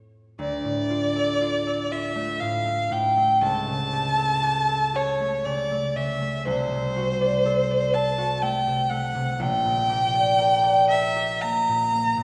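A single bowed violin carries the melody in this elegiac romantic duo, its rich, smooth tone sung with vibrato and an even line that sits up front, entering at 0.4 seconds. The concert harp begins the passage at 0.0 seconds, providing fingerpicked, ringing accompaniment that spans its low register up to the middle of its range beneath the violin's higher melody. The music moves in a flexible, rubato three-four, its melancholic harmony passing from D minor through A7/C#, D7/C and Gm/Bb. Both instruments are placed up front, yet they are heard from further back in a concert hall whose wet reverb gives the harp's warm strings and the violin a lingering bloom. The instruments are tuned slightly below modern concert pitch, to A4 = 435 Hz, and this 12.2-second passage is cut from a longer piece.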